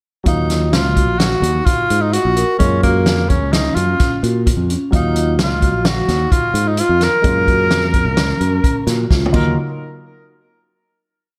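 A big arena sound framed by moderate, lush hall reverb carries this tense, driving progressive instrumental in 5/4, where a breathy, whispered tenor saxophone with slapback echo and digital delay carries an intimate, motif-based jazz melody of arch phrases up front over a punchy, fat-snared vintage drum kit, a bright syncopated riff from fingered electric bass, a ringing vibraphone ostinato with slow motor vibrato, and held rootless chords from a background grand piano, until a drum fill at 9.1 seconds leads into a final hit at 9.6 seconds.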